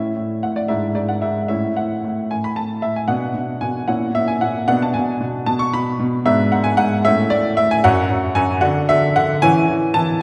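Graceful and cheerful, this classical-period piano sonatina moves in a straight 6/8, with a solo baby grand playing throughout its 10.2 seconds, spanning F#2 to C#6. The piano sounds clear and natural with a short sustain, placed up front, while a wet scoring-stage reverb and dark production surround it. The harmony opens on A and E7/G#, passes through Bm, F#9/A# and G#m7b5, and closes this excerpt on Dadd9 and E6.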